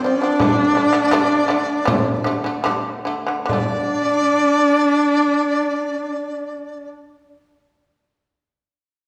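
Vast and windswept, this short Mongolian folk fragment sets a husky, bowed horsehead fiddle melody with expressive vibrato and portamento over an airy bamboo dizi line and buzzing, plectrum-plucked shamisen arpeggios, while a small, bright frame drum sounds from a distance and drops out at 3.9 seconds, the opening phrase slows before the second section begins at 3.5 seconds, and a recital-hall reverb gives the whole a spacious, church-like resonance.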